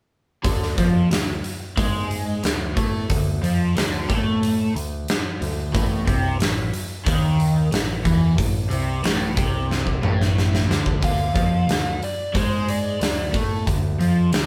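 At 0.4 s, a double-tracked, overdriven semi-hollow guitar and the full band launch into a driving, raunchy blues rock riff with a southern rock edge. A phaser colours the guitar, and a huge arena drum kit with a punchy kick and a medium-tuned snare sits up front beside it. A growling picked electric bass, overdriven and blending direct and amped tones, anchors the low end in straight 4/4 time while the harmony moves from D5 to A5. A drum fill from 9.7 s ushers in a new section at 11.0 s, where a dark, distorted fuzz lead guitar plays a short, high solo phrase until 13.3 s. The band sounds like it is playing live together in one room with moderate studio reverb, and this excerpt is cut from a longer piece.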